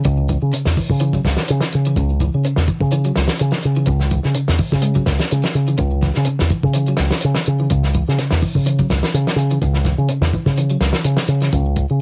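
A driving 126 BPM groove in 4/4, with a light swing on the sixteenths, sets up this funky afrobeat fragment, which stays on a single C# minor chord for its 12 seconds. Up front, a fingered electric bass through an envelope filter sounds round and punchy, while a soul drum kit of hi-hat, kick and snare, with a fat snare and a tight kick, has a close, mid-forward booth sound and a rolled-off top with cassette tape coloring. In the background, a clean, picked electric guitar plays arpeggios through analog chorus and tape echo, all set in light reverb with the character of a home cassette recording.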